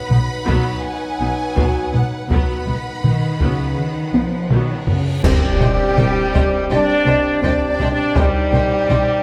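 A straight 4/4 pulse at 82 BPM drives this dramatic, epic orchestral film-score excerpt. Saturated, compressed taiko drums with heavy sticks pound beneath an up-front French horn section holding warm, vintage chords. Lush string sections fill out the sound: an expressive violin section with a soft attack carries the melody over a focused second violin line, while smooth violas, close cellos and clear double basses sit in the background. Dark clash cymbals, a cymbal swell and concert bass drum join at 2.3 seconds, and a drum fill from 4.1 seconds leads into a faint reverse cymbal. At 5.2 seconds the harmony moves from B to C minor with a band accent and a huge, quiet impact. There a mellow silver flute adds a second line, and a hollow pipe organ stopped flute with chiff and tremulant sustains chords, all bathed in a moderate scoring-stage reverb.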